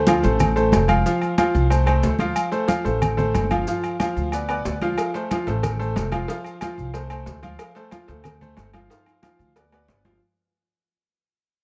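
A bright, worn concert grand piano with audible action noise sits up front beside a woody, thumpy pizzicato upright bass in this festive, danceable salsa excerpt, driven by soft-handed high-tuned congas, grainy maracas and ringing, vintage timbales and agogo bells, with a tight cowbell joining in the background at 5.0 seconds, all in light reverb as chords move from Dm7 to G7 and the whole passage fades out toward a drum fill at 8.9 seconds.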